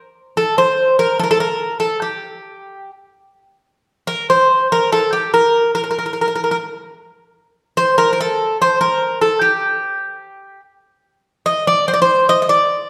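A solo Greek bouzouki carries this short cut from a longer Greek folk piece, entering at 0.4 s with a picked, metallic tone whose double strings, some of them octave-doubled, give each note a shimmering edge. The mood is reflective and melancholic, set in G minor and moving at 146 BPM counted in eighths across a 9/8 metre with a straight feel. The melody stays within a narrow span from G4 to Eb5, keeping the line close and intimate. An opening statement of the main section gives way at 3.2 s to a return of that same material, which runs until the bouzouki stops at 12.9 s. The instrument sits up front in a wet recital hall reverb with a 1.4-second decay, and the church or concert hall acoustic lends its acoustic sound a spacious, resonant halo.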